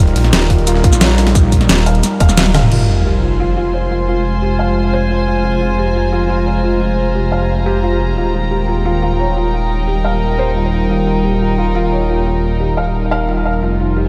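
A driving straight 4/4 pulse of tight electronic kicks, overdriven up-front dubstep drums and a very quiet gritty breakbeat layer punches through the opening drop of this aggressive, mechanical dark technical drum and bass excerpt, while a snarling, saturated saw bass growls beneath a deep, moody pad and a felt-muted upright piano's soft arpeggios with audible action noise. A drum fill at 2.5 seconds and a background sub drop at 2.7 seconds hand over to a reverb-soaked stretch where reedy bowed strings join in, with bass, pad, piano and strings all pumping to the sidechain over Eb and Fm chords.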